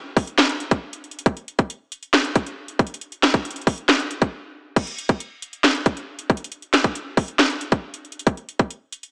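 Heard through a small-speaker sound with a moderate scoring-stage reverb, this short cut from a longer hip hop piece has a wistful yet triumphant mood and a half-time feel in four. An electronic trap drum kit sits up front from 0.2 seconds, its hard-clipped kick, sharp snare, metallic hi-hats, handclaps and crash cymbal pushed through overdrive and re-recorded in a small room. A brief break at 4.3 seconds sets off the second half, which runs until 9.1 seconds.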